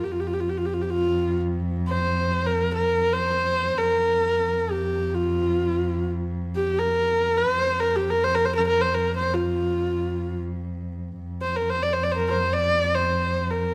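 Close, detailed microphones catch a husky, focused horsehead fiddle and a woody cello, set in the moderate reverb of a recital hall. In free time and the F zhi mode, this cut from a longer piece of Mongolian folk music feels vast and proud. The bowed fiddle carries the melody with vibrato and portamento between F4 and D5, while the dark cello holds an F2 drone with its own vibrato, both up front from 0.0 to 13.7 s.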